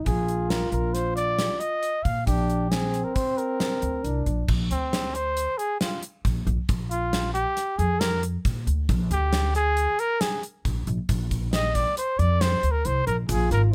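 Driving and bright, this progressive instrumental excerpt moves at 136 BPM in 5/4 with a straight feel in Bb mixolydian, built on a woody, growly pizzicato upright bass and a punchy, gated 80s drum kit that sit up front in a dry mix. A mellow, breathy trumpet carries the melody with light vibrato and scooped notes, stepping into a jazz-style solo at 4.5 s, while a close-miked trombone with a warm tone plays a second line in the opening bars and returns briefly at the end. A grainy tube shaker adds a very quiet touch at 13.3 s.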